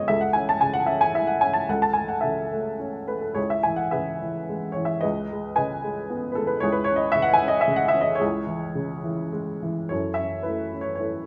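Classical solo piano in C# minor, lyrical and brooding with a cool cast, moving in 3/4 at a rubato pace that drifts between 99 and 117 BPM across this short cut from a longer piece. A worn, woody upright piano sits up front, slightly detuned, spanning C#2 to A5 as it passes through Amaj7/C#, C#m7 and B13/C# before settling toward F#m7 at 9.9 seconds. A moderate recital-hall reverb gives the instrument a sense of space.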